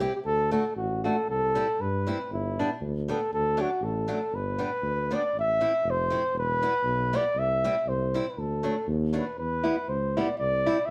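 Jolly and festive, this short excerpt from an alpine folk piece moves at 119 BPM in a lilting 2/4 with a gentle swing on the eighth notes, settled in G major. A mellow flugelhorn carries the melody up front in a classical style, its round tone sitting between E4 and E5. Beneath it, a picked old ladder-braced acoustic guitar supplies the accompaniment with a woody, boxy sound and the soft dullness of old strings. A tuba anchors the bass in a classical manner, smooth on top with a light vibrato, reaching down to E1. The harmony wanders through D, C, G, Am and Em before resting on a Cadd9 at 10.4 seconds, while a moderate studio reverb places the trio together in one room like a live dance band.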